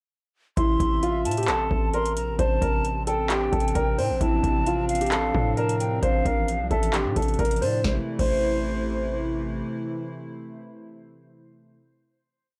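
A dark, boxy concert grand piano loops a brooding melody up front in this half-time trap track at 132 BPM in A phrygian, joined by an airy flute counter-melody with tape echo, a soft chorused pad, a distorted 808-style bass with pitch slides, and a booming, overdriven analog drum machine with fast hi-hat rolls, before the pad holds the final chord alone from 9.6 seconds to 11.8 seconds in a gritty, dry hardware recording.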